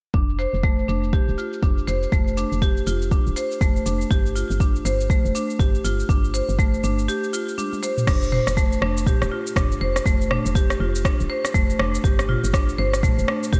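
A bright, mid-forward marimba struck with hard mallets plays through this spiritual, hypnotic afro house excerpt, its arpeggios sitting up front through a low-pass filter, analog delay and sidechain pumping, over a soft, round, woody FM bass that also pumps and a deep, overdriven electronic kick. An electronic afro-pop kit of cabasa, rim click, toms and crash cymbal fills out the groove, which swings on the sixteenths. Its parts are dulled by low-pass filters while a filter sweep runs on the drums through the opening section, all in a light reverb. A break at 7.1 seconds and a drum fill lead into a new section at 8.1 seconds.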